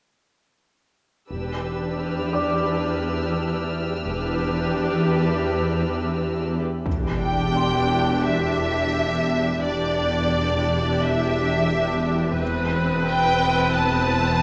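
Lush bowed strings open this eerie, ominous suspense film cue at 1.3 s, with an up-front, focused violin melody full of vibrato over close, even violas, a soft-attack cello and a chamber double bass in the background, while a distant, smooth violin texture sits high above. Soon a detuned, organ-like sine drone with ensemble chorus and its own reverb joins underneath, along with a dark, boxy grand piano whose action noise is audible, and a huge impact lands at 6.9 s as the music moves into its second section. Cut from a longer score and set in a wet scoring-stage reverb, the harmony shifts from Em7 to Amadd9/E at 12.4 s, when the high violins return.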